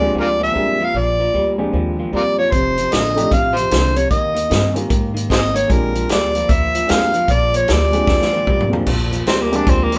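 An overdriven harmonica leads this rollicking, gritty electric blues shuffle, up front with vibrato, scooped notes and tongue slaps in its jazz-style solo melody. It swings at 151 BPM in Bb mixolydian, moving through Bb13, F13 and Eb6 chords. A slightly detuned upright piano with audible action noise plays mellow, dark accompaniment, while a twangy, slightly broken-up guitar through a small old amp picks a riff bathed in spring reverb, and a woody pizzicato upright bass holds the low end. A vintage drum kit with a punchy kick and a rolled-off top enters at 2.5 seconds and plays a fill at 8.1 seconds. A raspy, growling tenor saxophone then takes over with a solo at 9.3 seconds. The band sounds as if it is playing live together in one room with light reverb, in a piece cut from a longer performance.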